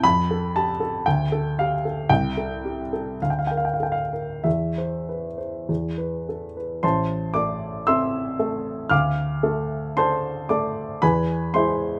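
A baby grand piano sounds alone from the first moment, close and up front, its intimate tone carrying audible action noise and a short natural sustain. This is a romantic classical character piece in a slow 2/4 with a freely breathing, rubato feel, and its mood is bittersweet yet passionate. The opening passage moves through a shifting chain of harmonies, from F through D minor and inverted A minor and B-flat chords toward a bare E chord at 5.7 seconds. At 6.8 seconds a new section settles onto A minor, passing to D minor and arriving on E at 11.0 seconds. The piano spans from deep bass up to its high treble, and light reverb adds a modest sense of room to this fragment of a longer work.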